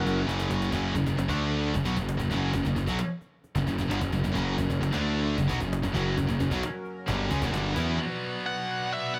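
Dark and relentless, this heavy metal excerpt drives along at 132 BPM in a straight 4/4, built on the exotic tension of F# phrygian dominant. A stack of riffing guitars carries the weight: a bright, up-front overdriven electric guitar, a bright scooped high-gain guitar, and a double-tracked fuzz guitar sitting in the background, all grinding through F# and D power-chord shapes. Beneath them a growly, fuzzed electric bass sits up front, while a snappy cajon with snares, heard in a small room, opens with a fill before its kick and snare drop out at 7.8 seconds. A very quiet, shimmering pulse-width pad with a slow attack and a retro chorused glow holds sustained chords beneath the riffs. At 8.0 seconds the riffing guitars, bass and cajon fall away onto a B minor chord, leaving the scooped guitar and pad, as a nasal lead guitar with a parked wah, overdrive and digital delay, heard only fleetingly at the very start, returns briefly on a high melody. 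The mix is dry and close, with little reverb.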